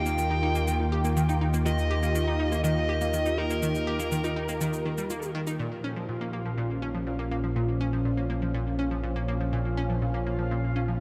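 Ambient, sequencer-driven space music with a hypnotic, cosmic mood, heard in a short cut from a longer piece and bathed in a vast cathedral reverb. A warbling analog drone carries the bass beneath a swirling, detuned phased pad and a bright, round analog pluck riff with tape echo, while a dark, overdriven lead guitar traces a melody through shimmer reverb and tape echo until 5.3 seconds, and electronic cabasa and bongos add tape-warm percussion. At 5.6 seconds the harmony moves from Eb to Bb minor and a resonant, bubbling stepped-filter texture drifts in from the background with chorus and shimmer.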